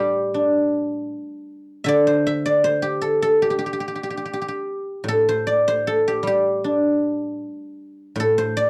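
A home cassette recording with a moderate studio reverb frames this short cut from a longer piece of Chinese traditional music, a serene and flowing solo for guzheng in 2/4 with uneven, rubato beats. The guzheng sits up front for the full 8.7 seconds, its fingerpicked strings bright, silvery and ringing across a range from A2 to E5, with a cassette tape coloring on the instrument itself.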